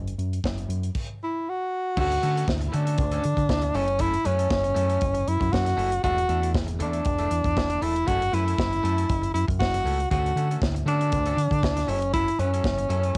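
Disco at 118 BPM in F# minor, sultry and glamorous, where a dark, round fingered bass opens at 0.0 seconds with a modern studio kit of bright cymbals and tight kick, a breathy tenor saxophone with vibrato and scooped notes takes the jazz-style lead from 1.2 seconds, and a twangy, slightly broken-up picked electric guitar slips into the background at 2.0 seconds over Dmaj7, F#m7 and E7sus4, all in a dry home cassette recording that gives the sax and guitar a tape-worn tinge.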